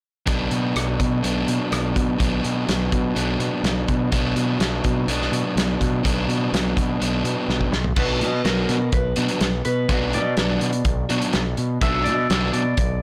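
An overdriven semi-hollow guitar drives this cool, restless indie rock fragment, its picked, hollow-bodied riff sitting up front over a B minor chord at 125 BPM in a straight 4/4. Beneath it, a growling fingered electric bass adds a bright, amped, overdriven edge, while a loose acoustic drum kit in a small room supplies a fat snare, tight kick, rim clicks, toms, hi-hat and dark crashes with a rolled-off top. A drum fill at 7.5 seconds leads into a brief break from the chord before the B minor returns at 8.0 seconds. There a concert harp enters with a ringing, fingerpicked melody, and a very quiet, twangy electric guitar through a small old amp plays a riff in a slightly broken-up, lo-fi tone. The whole recording sounds blown-out and overdriven, with a light reverb around it, and it is cut from a longer piece.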